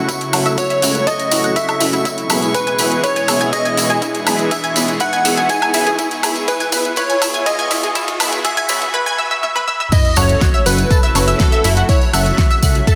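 A catchy, detuned unison lead, a pure FM bell with vintage 12-bit grit, a bright supersaw pad, a round analog pluck arpeggio, a funky plucky analog bass and a glassy, drifting-harmonics texture open this dreamy, expansive progressive house excerpt, each pumping against the sidechain, while a punchy up-front electronic kick, a pop kit with fat snare and metallic hats, a jingly tambourine and smooth, sustained supersaw stabs join almost at once. Filter sweeps, a background riser and drum fills build until the texture drops out at 8.9 s, and an impact marks the drop at 9.9 s, all set in a moderate, lush hall reverb within a dense, heavily limited master.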